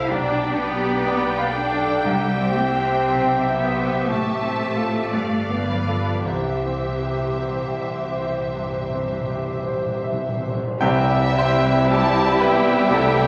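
A passionate, lyrical romantic movement for piano and orchestra opens at once with a bright, brilliant baby grand piano carrying the melody up front, its long sustain ringing over lush bowed strings. Moving with rubato at a slow 52-63 BPM in 4/4 and C major, the passage passes through G7/B, C, F/A and G9 before settling back on C. One violin section shares the melody with a focused, smooth-topped vibrato, while a second violin section holds an even second line and the expressive violas fill in accompaniment in the background, supported by clear cellos and double basses on the bass. Timpani struck with medium mallets join softly at 2.0 seconds and add a fill from 6.3 seconds. At 10.8 seconds the music turns to a new section as winds and brass enter: a clear oboe and a very quiet, pure flute section on second lines, a mellow, close bassoon in accompaniment, and sustained chords from a dark French horn section and a faint, vintage-toned trombone section. 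A reverberant recital-hall ambience surrounds the ensemble, and this short passage is cut from a longer piece.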